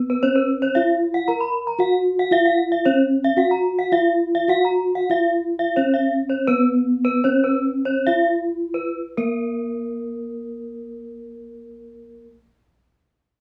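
A bronze gamelan metallophone struck with padded mallets opens the excerpt with a mellow, ringing melody in Bb pelog, soon joined by a second metallophone played with a horn mallet whose bright, airy arpeggios sit higher up. Both are up front, and their paired tuning gives them a shimmering, beating glow. The brilliant music in 4/4 moves between 63 and 114 BPM, slowing from 3.4 to 9.0 seconds before a new section begins, all heard live in a reverberant studio room.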